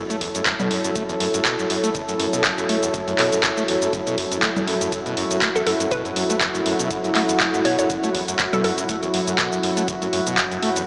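A dreamy, reverb-soaked mix with a small-speaker sound carries this driving, trippy acid house excerpt, where a squelchy, gritty overdriven acid bass riff with tube saturation and cassette-tape grit pumps beneath a smooth, detuned analog pad on an F#m7 chord and a warbling, nostalgic tape-like pad, while an up-front booming analog drum machine with metallic hats, congas, handclaps and shaker rides over a deep electronic kick in the background, and a hollow, bouncy square pluck melody appears from 5.6 to 8.7 seconds.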